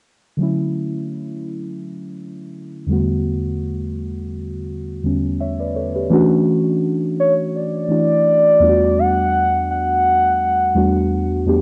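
A gliding, mellow sine lead with vibrato and a smooth chorused shimmer enters at 7.2 seconds, drifting through analog delay over the second half of this late-night, sensual R&B fragment cut from a longer piece. Beneath it, muted felt-like synth keys, dark and intimate with a soft noise layer and filter sweep, carry the lightly swung accompaniment from the start, moving from Dmaj9 to Em11. Both parts sit up front with a worn cassette-tape haze, light reverb and a digital ambience that give the home recording a hushed, closed-in glow.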